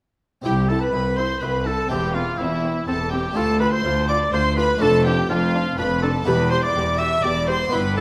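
Strings and harpsichord enter together at 0.4 s: a background second violin line, dark, nasal violas, and a brilliant, dry harpsichord with three sets of strings, over a bass of gut-strung cellos and close, bowed double basses. At 0.5 s the melody arrives, carried by an up-front oboe with a soft attack and light vibrato, alongside a rich upper violin section in period style with a smooth top. This festive, lively cut from a longer baroque-style concerto movement moves at 124 BPM in a straight 3/4, in C major tuned to A4 = 437 Hz. The harmony moves from C through C/E, Dm and Dm/F to Em at 6.3 s. The gut-string sections have a reedy, period colour, and a recital hall reverb with a 1.5-second tail wraps the ensemble in a wet, resonant space through to 8.0 s.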